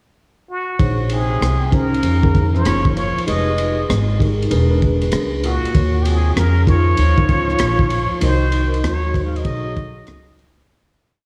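A dreamy, reverb-soaked mix with small-room ambience carries this smoky, nocturnal jazz-hop piece in Bb minor at 97 BPM, where a crunchy, saturated breakbeat kit lays a punchy boom-bap beat under a swung ride cymbal and a woody, thumpy upright bass walks with muted ghost notes, while a mellow tine electric piano pushes rootless chords, a breathy plunger-muted trumpet with tape echo states scooped, motif-based call phrases from 0.5 s, and a raspy, growling tenor saxophone with tape echo joins at 1.1 s with a harmony line mostly in sixths before the fade-out starting at 8.2 s.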